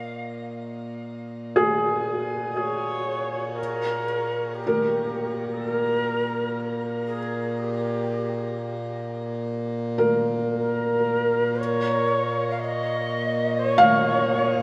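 A straight 4/4 pulse at 60 BPM carries this melancholic, serene ambient excerpt, where an airy bamboo shakuhachi with vibrato and chiff sings a distant, expressive melody and a soft felt-muted upright piano plays intimate arpeggios, both steeped in shimmer reverb and delay, over a reedy, breathing Bb2 drone from a close-miked hand-pumped harmonium, with the harmonium and shakuhachi fading in across the full 14.6 seconds as the harmony moves from Bbm to a rootless Gbmaj7 at 11.6 seconds, inside a wet cathedral reverb with a cassette-tape grain.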